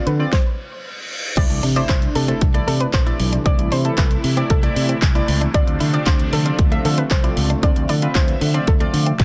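A soft, round synth pluck carries the melody from the first moment of this euphoric, upbeat dance-pop excerpt in C major at 115 BPM, joined by a glossy, retro chorused polysynth and a mellow, evolving supersaw swell holding sustained chords in the background. A punchy, up-front pop drum kit with fat snare, bright hats, handclaps and crash cymbal comes in almost at once alongside a dark, round fingered electric bass, though the groove breaks into a stop at 0.3 seconds, and a reverse cymbal enters at 0.6 seconds. An electronic impact lands at 1.4 seconds as the full arrangement returns, and a clean, bright, direct-recorded electric guitar slips in with a picked, compressed riff tucked behind the synths. The bass, polysynth and supersaw all pump through sidechain compression, while the pluck carries chorus and digital delay and the guitar an analog chorus. The harmony moves from Dm7 to C69 and back to Dm7, all set in a digital ambience with a dense, heavily limited modern master.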